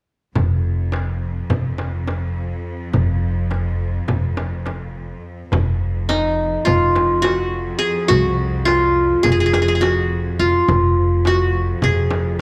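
Melancholic and longing, this short cut from a Turkish makam ensemble piece in 9/8 sets a clear, intense bowed cello section drone and a woody, dark pizzicato upright bass over crisp metal-shelled darbuka and deep frame drum played with soft hands in the background, before a bright, plectrum-plucked qanun enters up front at 6.1 seconds, all in a small room with light reverb.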